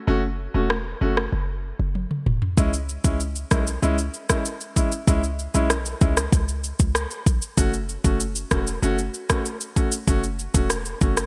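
An up-front afro-pop drum kit, electronic and deep in the kick, drives this sultry, tough dancehall excerpt at 96 BPM in a straight 4/4. Its kick, rim click, shaker and toms carry a gated reverb, entering at 0.7 seconds during an opening break that closes with a drum fill from 2.0 to 2.6 seconds. Beneath it, a short 808-style bass sits low with a punchy, tight sine tone layered with noise, each note striking fast and decaying. A concert grand piano provides intimate, boxy accompaniment close to the listener, its long sustain, deep bass and audible action noise giving it a physical presence. The harmony rests on F#m, moves to C#m once the break ends, and returns to F#m. Light reverb and digital ambience frame a bright 1980s-style digital production.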